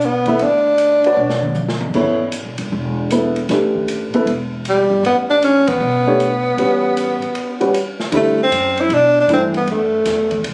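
A warm, scooped tenor saxophone with vibrato sits up front in this hypnotic, spiritual modal jazz excerpt at 155 BPM in swung 4/4, entering briefly at 0.0 seconds and returning from 4.7 seconds over an intimate baby grand piano with audible action noise, a woody, thumpy upright bass, and a dark-cymbaled drum kit with a boomy kick that plays a fill at 1.2 seconds, all caught on a phone in a club with light reverb.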